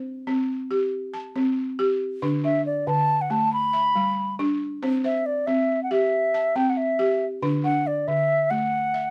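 A balafon opens this short, joyful West African traditional excerpt, rolling out arpeggios in a straight 12/8 feel. Its woody, dry tone, struck with rubber mallets, carries a buzzing, airy edge and sits up front. At 2.4 seconds a wooden flute enters with the melody, pure and crisp in attack, with vibrato and lifted highs, also placed close to the listener. The two parts play together over a simple chord movement until the excerpt ends at 9.1 seconds. Close, detailed microphones and a touch of light reverb give the sound an intimate, sunny glow.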